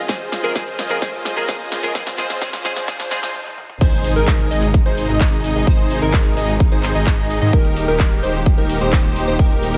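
A rich, bowed studio string section opens this uplifting, euphoric progressive house excerpt, holding smooth sustained chords in the background over a Dbadd9 harmony at 129 BPM in Ab major. Almost at once, a punchy layered electronic kick sits up front beneath a big-room kit of punchy snare, metallic hi-hats, shaker, handclaps, toms and crash, while a bright, twangy clean electric guitar adds picked accompaniment with dub echo until 3.2 seconds. A very quiet riser and impact add to the build-up, and a catchy, plucky square-wave lead spins arpeggios with dub echo and a moving notch. A huge, airy, dense compressed supersaw riff with a sub octave and noise layer plays alongside them. A drum fill and a brief stop lead into the drop at 3.8 seconds, where a thick, lush detuned saw bass with chorus arrives as the harmony moves to Ab and then Eb. Sidechain pumping makes the strings, lead, supersaw and bass breathe with the kick, all set in light digital reverb.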